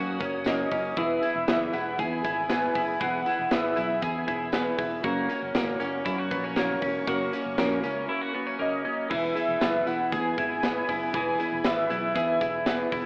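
A velvety, detuned synth lead with slapback echo carries the melody over a twangy, chorus-drenched twelve-string electric guitar, a fingerpicked jumbo acoustic, a round fingered bass, a punchy big-room rock kit, a jingly tambourine and a very quiet bowed string section, giving this bright, youthful jangly indie pop excerpt a rough home-demo, AM-radio sound with a short break at 8.1 seconds.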